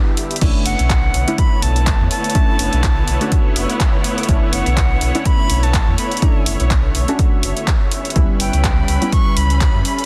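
A layered drum kit of crash cymbal, handclaps and hi-hat, carrying overdrive, opens this hypnotic deep house groove at 124 BPM in 4/4 with a light 16th-note swing, and a punchy, overdriven electronic kick joins at 0.4 seconds. A deep, full sub bass with an added octave also enters at 0.4 seconds, pumping against the kick alongside the sidechained pad, strings and chord stabs. Soft, dark, warbling chord stabs with chorus and dub echo sit over a smooth, detuned analog pad whose moving notch and vintage sampler grit add texture, while a lush bowed string section with gentle vibrato fills out the upper register. From 0.7 seconds a breathy, reedy jazz flute with a crisp chiff carries the melody high above, trailing dub echoes. The harmony rests on Bm11 in B minor before shifting to C#m7b5 at 7.9 seconds, all within a dense, heavily limited modern master with digital ambience, in this short cut from a longer piece.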